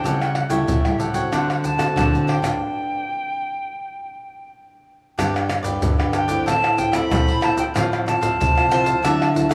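A pure, tongued silver concert flute with vibrato carries the melody of this joyful, lively samba and choro excerpt over crisp picked cavaquinho, a full-bodied fingerpicked nylon-string guitar, a second nylon-string guitar thumb-plucking the bass with audible finger squeak, and up-front, vintage, band-limited percussion from egg shaker, tight surdo, pandeiro and tamborim, with a stop from 2.6 to 5.2 seconds, a bright, double-strung bowl-back mandolin slipping in at 8.7 seconds, and a wet plate reverb over a rough home-demo mix.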